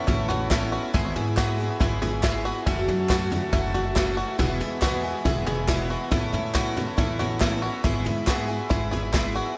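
A straight 4/4 pulse from a brushed vintage drum kit with a tight kick drives this uplifting indie folk excerpt, joined at 0.5 seconds by barely audible group handclaps and jingly tambourine, while a woody, pizzicato upright bass thumps out the low end. Up front, a shimmering, octave-doubled twelve-string acoustic guitar picks the accompaniment with subtle chorus, a twangy banjo adds fingerpicked arpeggios through analog delay, and a reedy pedal harmonium breathes sustained chords in the background. The mix is dreamy and soaked in huge ambient reverb, giving the building arrangement a hazy, spacious glow.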